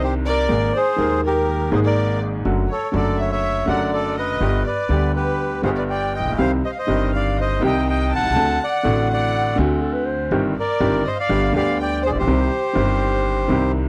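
Tango in a passionate, dramatic mood, played with a rubato feel in this excerpt from a longer piece. A reedy, smooth bandoneon carries the melody up front, while a chamber violin section with light vibrato and a gut-string, period-style tone adds a second line in the background. A brilliant, polished upright piano supplies the accompaniment, and a woody, dark upright bass with steel strings plays pizzicato beneath it. A soft-attack clarinet in classical style slips in briefly with its own second line between 9.6 and 10.4 seconds. The sound is a dry, close 1970s-style studio recording with light reverb, and the harmony travels from Absus2 through D7 before settling on Cm.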